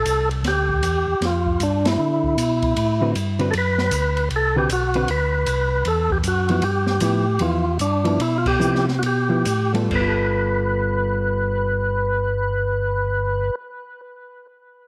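A percussive, key-clicking tonewheel organ with second-harmonic percussion carries the melody over a mellow, round organ bass line, both up front with chorus vibrato and slow rotary speaker and the lead adding tape echo, while an open, small-room jazz kit with dark cymbals, a high-tuned snare and a boomy kick swings in 4/4 at 132-156 BPM; a compressed hollow-body electric guitar joins at 3.0 seconds with clean, fingered accompaniment, and this soulful soul jazz organ trio excerpt in G mixolydian slows from 6.6 seconds before the drums stop at 10.0 seconds, all under light studio reverb.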